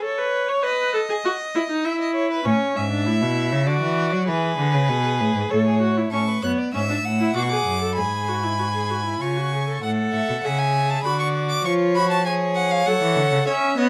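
A focused, up-front violin carries the melody of this lively, stately baroque-style fugue for string quartet, entering at 6.1 s as the harmony turns to minor, its bowed line sung with vibrato above the ensemble. Beneath it, a rich-toned second violin and a clear viola play from the opening, joined at 2.5 s by a close cello bass, each a single bowed player with vibrato. Light reverb lends the quartet a touch of space in this short passage in triple time, cut from a longer piece.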